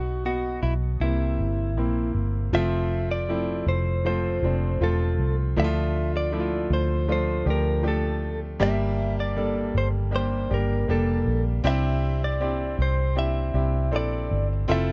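A dark, round, foam-muted electric bass sits up front beneath a clear, polished concert grand piano and a clean, compressed direct electric guitar carrying the melody in this hopeful, heartfelt pop ballad excerpt in F major at 79 BPM, moving through B, C7, F, Dm, Gm and Cadd9 in a dry, close 1970s-style studio sound.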